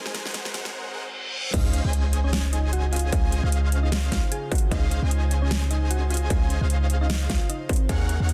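A deep, boomy 808-style bass with sidechain pumping anchors this playful, bright future bass fragment. A dubstep kit with a huge snare and metallic hats, lush detuned supersaw chords with cassette-tape colour, a breathy pad, glassy keys and a riser with reverse cymbal and sub drop build from an Ab7 into a half-time drop on Dbmaj9 at 1.5 seconds. There the bass, a distorted kick, a tine-like FM pluck melody and airy lead arpeggios join, all in a dense, heavily limited, dry mix.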